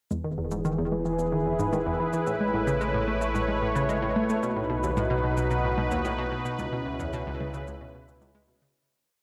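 Luminous and cosmic, this short piece of ambient, sequencer-driven space music in E major moves at 111 BPM in a straight 4/4, with a sweeping, airy resonant pad holding sustained chords from E through Aadd9 and B to C#m7, a bright detuned analog pluck repeating an eight-step sequence through chorus and tape echo, a deep wave-folded analog bass sustaining the roots, and a light, dry machine pulse of shaker and high conga, all steeped in a huge reverb and worn, warbling cassette tape before a fade-out from 5.9 seconds.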